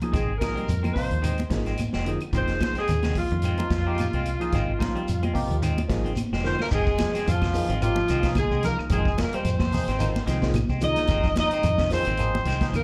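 A driving, hypnotic afrobeat groove moves at 110 BPM in 4/4 with a light swing on the sixteenths. It rests on a vintage drum kit with a punchy kick, medium-tuned snare, hi-hat and crash, all under a rolled-off top. Thick-skinned, high-tuned congas, a grainy shekere and woody claves sit in the background. A deep dub fingered bass, dark, round and foam-muted, anchors the Fm7 harmony in F minor beneath a barky tine electric piano, lightly overdriven through a combo amp with phaser and slapback echo. A clean electric guitar picks stabs with slapback echo, while a semi-hollow guitar plays hollow-body arpeggios through tape echo in the background. Up front, a warm horn section carries the melody with light vibrato and a roomy, distant quality, and a drum fill at 6.5 s brings in a bright plunger-muted trombone with a wah-wah voice on a second line, all heard as a live gig through the venue's PA with light club reverb.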